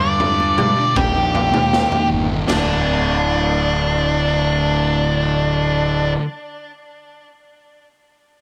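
A moderate spring reverb hangs over this brief, trippy and mysterious psychedelic rock fragment in 4/4 at 79 BPM, its chords moving from G5 to Eb and on to D5. An up-front, octave-fuzz lead guitar carries the melody with distortion and tape echo, over a thick, double-tracked fuzz guitar riff run through a phaser and a round, punchy fuzz bass with overdrive. A raw garage drum kit with a boomy kick and dark cymbals, pumping in a small room, plays only from 0.2 to 2.7 seconds, joined by high-tuned congas that are barely audible.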